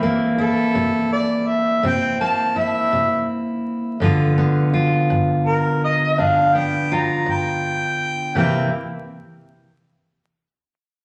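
A fingerpicked steel-string acoustic guitar opens this gritty, rollicking acoustic country blues excerpt in 12/8 at 55 BPM in C mixolydian, its full-bodied dreadnought tone moving from C7 to G7 beneath a mellow, distant harmonica that enters at 0.4 seconds with soft-attacked, scooped, jazz-style notes, all set in a large, reverberant studio space with vinyl crackle and lossy artefacts colouring the sound.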